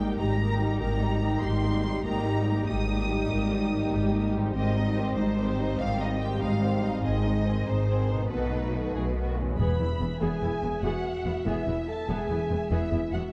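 This cinematic excerpt opens on a dark, moderately reverberant scoring-stage sound, with a triumphant, heroic mood carried in a steady 12/8 metre. Lush bowed violins lead the melody with a focused vibrato, while a second, more distant violin section adds its own expressive line. Behind them, violas with sliding portamento fill out the accompaniment, a mellow French horn section holds sustained chords until 9.4 seconds, and a very quiet harp rings with fingerpicked arpeggios. Cellos and double basses anchor the bottom with a smooth, even bass. At 9.6 seconds the music arrives on an E major chord, where a solo clarinet with a dark, smooth top joins with a second line and round, soft-mallet timpani sound briefly.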